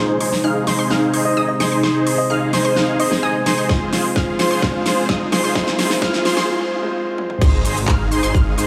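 A huge, thick supersaw riff sits up front in this festival progressive house excerpt, its detuned, compressed tone run through a low-pass filter sweep, dub echo and sidechain pumping across a build-up at 129 BPM in straight 4/4. Beneath it, a dark, mellow baby grand piano and a lush, warbling vintage pad carry the chords from Ab to Fm and back to Ab, while a bright unison pluck spins arpeggios high above. A round, gentle FM lead with a keys-like quality plays a soft melody in the background from 1.3 seconds, and a big-room drum kit with a huge snare, crisp hats, claps, shaker, toms and crash cymbal drives a long fill. A punchy, layered electronic kick enters at 3.7 seconds, and from 4.1 seconds a very quiet riser and sub drop lift the tension toward a short break. At 7.4 seconds the drop lands with an impact and a saturated, detuned saw bass on Ab, all set in a moderate, huge ambient reverb that gives the emotional, euphoric mood its scale.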